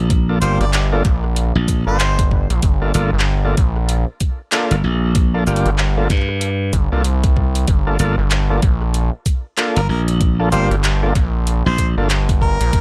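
A bright, punchy slap bass opens this funky, swaggering glitch hop excerpt at 95 BPM in G minor, where a knocking up-front kick and a tape-toned dubstep kit of handclaps, metallic hats, rim click and shaker ride a 16th-note swing, a gritty, saturated sawtooth synth bass with a resonant filter pluck drives up front, a thick, lightly overdriven tonewheel organ stabs on a Gm7 through slow rotary speaker, sidechain pumping and analog delay, and a smooth, jazz-style harmonica with scooped notes and light vibrato sings briefly at the start before returning at 9.8 seconds, all captured in a dry, gritty hardware sound with a digital ambience.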